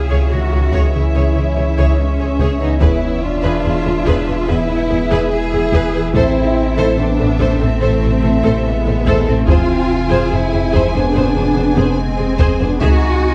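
Heavy-stick taiko drums, close, dry and very quiet, pulse in a straight 4/4 at 72 BPM from 0.7 seconds beneath this vast, relentless hybrid orchestral and electronic film-score excerpt in A harmonic minor, where a smooth violin section with light vibrato carries the melody over a lush second violin line, a viola accompaniment touched with portamento, expressive cellos and rich, close double basses, while a French horn section sustains chords, a round sine sub bass anchors the low end, and a deep, moody, detuned sawtooth pad with chorus glows in the background through a moderate concert hall reverb as the harmony moves from C#m through E, Am and Fm.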